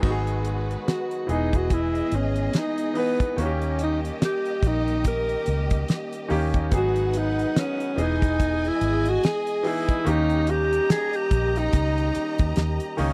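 This dry, close recording has the sound of a 1970s studio session, with little reverb on any part. The excerpt is lush, cinematic and bittersweet soul at 72 BPM in 4/4, with a lightly swung sixteenth-note feel, and it cycles twice through G#m7, Emaj7 and D#7. A breathy alto saxophone carries the melody from 0.9 seconds, its subtone and light vibrato giving a punchy, roomy jazz voice that sits up front. Underneath, a damped acoustic drum kit with a fat snare, tight kick, hi-hat and crash cymbal pairs with a dark, round, foam-muted electric bass, and both are prominent in the mix. A brilliant concert grand with a deep low end and short sustain supplies the accompaniment, while a bowed string section with a smooth top adds a second line and a very quiet, mellow French horn section holds sustained chords.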